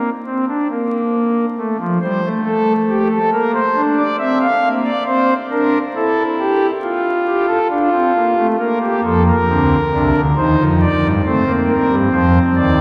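A pipe organ on foundation stops carries this lively, elegant baroque-style three-part fugue in B-flat major, its thick tone and romantic voicing sitting up front and spanning from C2 to F5. At a steady 69 BPM in 4/4, the harmony moves through F, B-flat and C7, with a new section arriving at 8.6 seconds that turns toward E-flat before settling on F. A long cathedral reverb surrounds the organ in a church-like space, faint vinyl crackle adds an aged patina, and the passage is cut from a longer piece.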